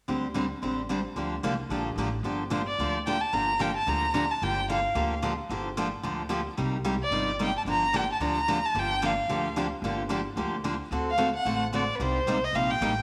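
Acoustic string swing in the jazz manouche style, swinging and bittersweet, cut from a longer piece: a bright, up-front picked steel-string guitar with audible finger squeak and a woody pizzicato upright bass open the passage, then a warm, expressive bowed violin enters at 2.7 seconds with vibrato, soft attacks and portamento, all set in a wet echo-chamber reverb and small-room ambience over a faint mains hum.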